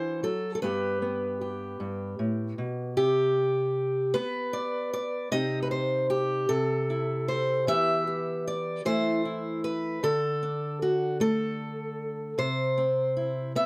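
Moving in a gentle, straight 6/8 at 51 beats per minute counted in dotted quarters, this short folk excerpt from a longer piece carries a peaceful, pastoral mood in G major. A single fingerpicked steel-string acoustic guitar plays solo throughout, spanning G2 to E5 with a warm, concert tone that sits up front. The close, detailed microphones catch the instrument in a moderate booth ambience with a brief, tight decay. After an opening on D and G, a second section begins at 3.0 seconds and wanders through C5, a rootless G/B, Cm and Am/C, then Em, Am/E and D5 before settling on C at 12.4 seconds. That borrowed minor color on Cm lends a touch of wistfulness to the otherwise calm, open harmony.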